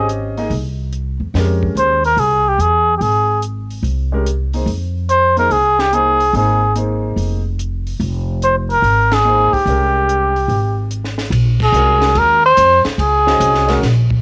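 Spiritual and cool, this modal jazz excerpt swings at 144 BPM in F minor, with a veiled, breathy cup-muted trumpet carrying the melody up front with light vibrato and plate reverb, a clear, polished grand piano accompanying over Fm11 before a shift to Bbm11 at 11.3 seconds, a woody, thumpy pizzicato upright bass, and a dry compact cocktail kit with dark cymbals, a high-tuned snare and punchy kick, while the trumpet, piano and drums carry a cassette tape coloring and the band hits accents at 9.0 and 11.5 seconds.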